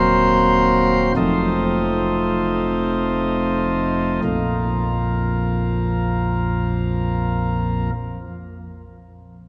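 Classical chorale-style music for solo chamber organ, solemn and grave in free time, this passage cut from a longer piece sets a full, up-front principal chorus with audible chiff across a range from Eb1 to C5, slowing through Cm7b5/Eb and F7 before settling on Bb5 at 4.2 seconds, the organ sounding from 0.0 to 7.9 seconds in a wet cathedral reverb with an RT60 of 4.3 s.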